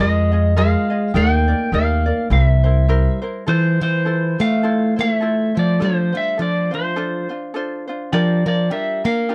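A dreamy, sunny Hawaiian groove at 103 BPM with a gentle swing opens on a clean, twangy pedal steel guitar carrying the melody with slide and volume swells, a boxy, up-front plugged-in archtop picking a second line with audible finger squeak, a light, bright fingerpicked ukulele and a woody, thumpy gut-string upright bass that drops out at 3.1 s, just before the music settles into F major at 3.5 s, all captured as a dry, close 1970s-style studio recording with moderate booth ambience.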